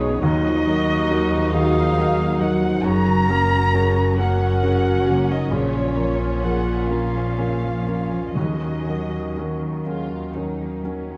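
A moderate scoring-stage reverb lends a veiled halo to this sorrowful, bittersweet cinematic score in a rubato 6/8. A solo violin, played con sordino with vibrato and portamento, carries the melody while a dark violin section also plays melody in a lower register, and a lush second violin section and a close-miked clarinet add a second line. Beneath them, a felt-muted upright piano with audible action noise and a very quiet viola section supply accompaniment, a mellow French horn section holds chords in the background, a ringing concert harp plays arpeggios, cello and double bass sections anchor the bass, and timpani struck with hard mallets join at 8.4 s in this fragment of a longer piece.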